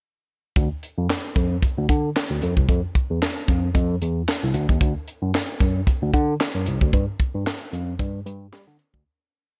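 Danceable and funky, this short early-eighties boogie funk piece moves at 113 BPM in 4/4 with a 16th-note swing of 56%, set in D minor and tuned to A4 = 444 Hz. A barky tine electric piano carries the bass role, playing a fat, syncopated boogie bass line between C2 and G3, its bright tone lightly overdriven through a combo amp and colored by a phaser. Beside it sits a tight funk drum kit, acoustic and dry, with a high-tuned snare layered with handclaps, a tight kick and hi-hat driving a mid-tempo boogie beat. Both parts sit up front, entering together at 0.6 seconds for a breakdown that runs nearly the whole length. Light reverb gives the mix a little space, and the piece fades out from 6.9 seconds to its close at 9.1 seconds.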